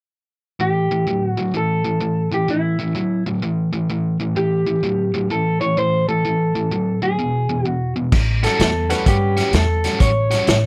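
Swaggering and rollicking, this short electric blues shuffle, cut from a longer piece, opens with a lo-fi, slightly broken-up guitar through a small old amp carrying the melody over a biting, overdriven guitar riff, both up front in a dry, close sound. At 8.1 seconds a woody, thumpy upright bass and a vintage drum kit with a punchy kick, dark cymbals and a rolled-off top join in as the harmony lands on an A13 chord. A bright, polished baby grand piano appears briefly and quietly at 8.9 seconds.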